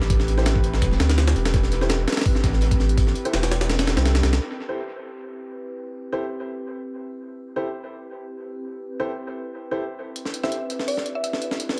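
Dark and nostalgic, this drum and bass excerpt at 167 BPM in A minor sets a warbling, detuned tape-like pad with chorus against a deep, saturated sub bass and a gritty, thumpy sampler-style breakbeat with a high-tuned snare and dub echo, layered with a very quiet, crunchy second break and boxy, 12-bit-tinged piano stabs that enter just after the start, until the bass and kits stop at 4.4 seconds and the pad, under a filter sweep, carries the piano stabs before the main break returns at 10.2 seconds beneath a brief woody, round FM mallet pluck melody.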